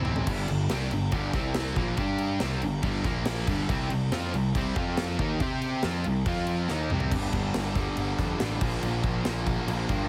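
A drum fill opens this swaggering, powerful hard rock excerpt at 140 BPM, with punchy acoustic drums and bright cymbals up front beside a growly, fuzz-soaked picked bass, while three picked guitars churn power-chord riffs in the background: a cranked stack guitar, a distorted electric guitar, and a double-tracked overdriven one that sounds briefly and then returns at 3.7 seconds. Another fill leads into a new section where the stack guitar stops at 7.1 seconds, and the whole mix sits in a small room with a heavily compressed radio sound.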